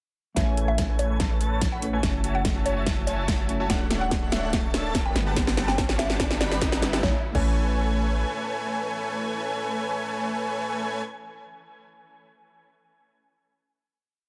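A half-time 4/4 beat drives this playful, euphoric future bass piece: a punchy, layered electronic kick sits beside a big-room kit with a huge snare, metallic closed hats with rolls and crash cymbals, both drum parts re-recorded in a small room, with the kit placed up front. Beneath them, a deep, dark 808-style sine bass holds long sustained roots, while a dense, compressed supersaw plays a riff of detuned, pulsing gated chords that carries a filter sweep through the build; both bass and supersaw pump with sidechain, and the supersaw trails dub echo. Further back, a woody, round FM pluck repeats a riff melody through chorus, phaser and delay, and a soft, dreamy lead doubles the chords in unison with vibrato, chorus, phaser and dub echo. A clean, fingered electric guitar adds held drop-2 chords with syncopated pushes, roughened by vintage 12-bit sampler grit and dub echo, and the pluck, lead and guitar also pump with sidechain. 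A very quiet granular pad shimmers in at 1.4 seconds, and a faint riser rides the drum fill as the harmony moves from Amaj7 through F#m7, Dmaj7 and Gmaj7, landing on a final Amaj7 at 7.0 seconds. The drums stop at 7.5 seconds, and the closing chord rings on in light reverb.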